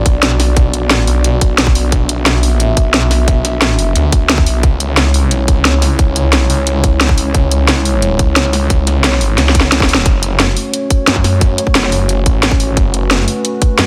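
A dark analog pad of detuned square and saw tones and a snarling, growling distorted saw bass with tube saturation both pump from the outset of this aggressive, dark technical drum and bass excerpt at 177 BPM in F# minor, joined at 0.1 s by a tight, up-front electronic kick and a layered kit with a cracking snare and hi-hat, as the harmony moves from Bm to C#m, then a drum fill from 9.4 s and a band accent at 9.9 s lead into F#m at 10.1 s, all set in light digital ambience.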